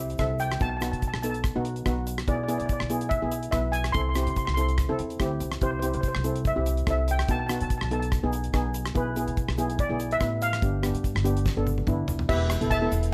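Calypso at 144 BPM in 4/4 with a light sixteenth-note swing, this intense, dramatic excerpt sets a shimmering lead steel pan melody, played with medium rubber sticks, over a dry, full, close-miked double-seconds pan accompaniment, all moving through chords from C and B7 to E/B, Am7/C and G7 before landing on Em. Underneath, a woody pizzicato upright bass on steel strings anchors the low end while a damped 70s drum kit, polished and up front with dark cymbals, a fat snare and a tight kick, drives the groove alongside a grainy egg shaker in the background. The drums break into a fill from 11.5 to 12.3 seconds, and the whole band sits in light reverb.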